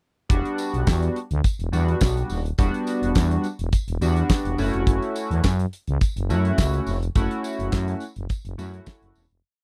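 Early-eighties boogie funk at 105 BPM in a straight 4/4, with a funky, late-night mood across a short verse that moves from Em7 to F#m7 at 4.6 seconds. A damped 70s drum kit sits up front with a four-on-the-floor boogie beat, its fat snare layered with handclaps over a tight kick and hi-hat, sounding dry, airy and polished. A growling FM bass plays a thick, syncopated boogie line with chromatic approach notes, reaching down to D#1. A chorused polysynth adds glossy, retro pulse-wave and sawtooth chords in a pushed rhythm with rootless voicings, colored by pulse-width modulation and a filter sweep. A jingly tambourine taps the backbeat in the background, and the close, dry studio sound carries the groove into a fade-out from 7.2 seconds.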